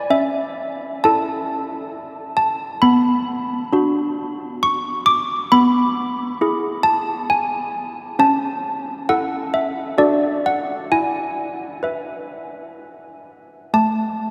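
Classical handbell tune, serene yet festive, at 66 BPM in an unevenly pulsed 3/4, in which solo malleted handbells, struck with hard clappers for a dark, damped, up-front tone, move through A/C#, Bm, E/B, D and E before the harmony drops away at 13.7 seconds, all bathed in a long, wet cathedral reverb, in a brief section cut from a longer piece tuned to A4 = 439 Hz.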